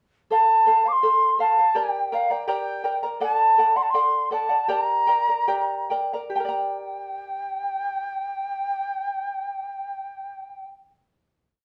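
In a straight 2/4 pulse at 67-83 BPM that slows between 3.2 and 6.3 seconds before settling on a final chord, this short, complete Andean folk piece in G minor sets a melancholic, wistful large quena melody of airy, woody, end-blown song phrases with tongued notes and vibrato above a shimmering, warm charango whose double strings are fingerpicked and strummed in open chord shapes, all heard from further back in a reverberant studio room.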